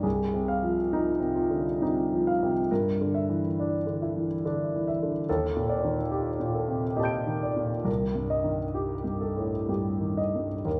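Classical impressionist solo piano, this short passage drifts in a hazy, nocturnal mood, moving in an unhurried triple metre with a freely stretched rubato pulse. A concert grand carries everything alone from 0.0 to 10.8 seconds, reaching from deep bass notes up into the top of the keyboard. Its tone is warm, intimate and natural, placed up front, with the soft mechanical noise of the action clearly audible beneath the notes. The harmony glides through lush extended chords, Fm7/C, Gm6, Ebmaj7#11 and Cm7, giving the phrase a floating, unresolved colour. A wet recital-hall reverb lets each sonority bloom and hang in the air of a church or concert hall, and the passage ends mid-flow as a fragment of a longer piece.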